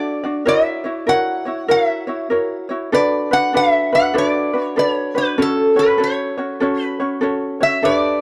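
A lilting swung 4/4 carries this dreamy, languid Hawaiian clip from a longer piece, where a bright, nasal metal-body resonator slide guitar, played with fingerpicks, sings the metallic melody up front over a mellow, light, fingerpicked ukulele accompaniment, moving through F#7, Bm7 and F#m in a dry, close, 1970s-style small-room sound that runs 8.2 seconds.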